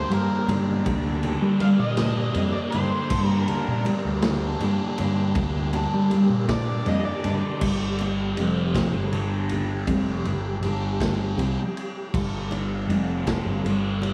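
A dreamy, reverb-soaked mix with a lush hall tail and a hint of small-room ambience frames this dark, mysterious slice of psychedelic rock, moving slowly at 53 BPM in a straight 6/8 in G minor. A dark octave-fuzz lead guitar opens with a solo melody over a G minor chord, its distorted tone trailing into diffuse ambient delay until it drops out at 7.4 seconds. Beneath it, a thick, double-tracked fuzz guitar sits up front with a phaser on its riff, while a growling picked electric bass, overdriven yet round, anchors the low end. A smooth tonewheel organ holds sustained chords in the background, colored by chorus vibrato, key click and a slow rotary speaker. A vintage acoustic drum kit with a punchy kick, medium-tuned snare, ride, crash and dark, rolled-off cymbals joins with very quiet, ringing congas played by soft hands. From 7.6 seconds the harmony shifts to a G5 power chord as the heavy fuzz riff, bass, organ and percussion carry on together.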